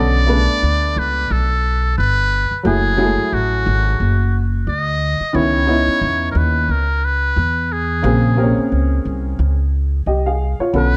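Mellow, smoky hip hop with a gentle swing, cut from a longer piece: a buzzy, thin solo trumpet with a metal mute sings a vibrato-laced jazz melody through analog delay over a clear, slightly detuned upright piano moving through minor ninth chords and a woody pizzicato upright bass, all up front in a small room with light reverb and the warbling pitch drift of worn cassette tape.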